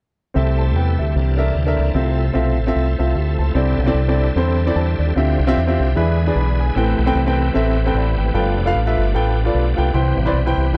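A fingered electric bass through an envelope filter sits at the front of the mix, round, punchy and up front, its dark, amped tone anchoring this uptempo gospel excerpt at 150 BPM in 4/4 with a swung eighth-note feel in C major. A woody upright piano carries the accompaniment from 0.3 seconds, natural and close, while a bright tonewheel organ holds sustained chords from 0.4 seconds, full and shouting through a slow rotary speaker and chorus vibrato. The harmony moves from C6 and C13 to Fmaj7, then opens at 3.6 seconds into a longer passage of C69, Dm11, E7, Am9 and G9 before settling on Cmaj7. The mood is jubilant yet reverent, and the light, small-room reverb and dark production keep the three parts close and intimate as the piece is cut from a longer performance.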